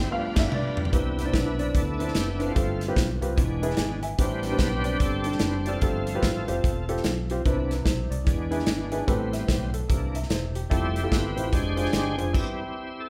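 A swung 4/4 groove at 147 BPM drives this soulful, uplifting gospel excerpt in C major. It opens with a band accent and drum fill, where lush strings sound briefly in the background before a bright, shouting tonewheel organ takes a solo through a slow rotary speaker with overdrive, chorus vibrato and key click. A woody, slightly detuned upright piano adds a fill at 3.4 s, while a round, dark fingered bass and an up-front acoustic kit with a tight kick support the organ until the band stops at 12.3 s on C, all set in a moderate church-like hall reverb.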